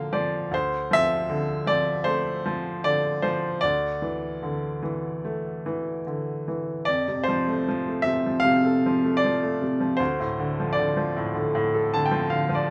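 A bright, woody upright piano sits up front in a light reverb, its polished tone giving this short classical fragment, cut from a longer piece, a clear and present sound. The lyrical solo piano piece moves at 77 BPM in 4/4 with a rubato feel, in D minor, tuned to A4 = 439 Hz, and its mood is wistful and dark. The piano covers a range from D2 to A5, opening with a brief fill over a Bb/D chord before settling on Dm7 and then Dsus2. Around 6.9 seconds the music turns to a new section, shifting to F and returning to Dm7. A closing piano fill from 11.5 seconds carries the passage to its end at 12.7 seconds.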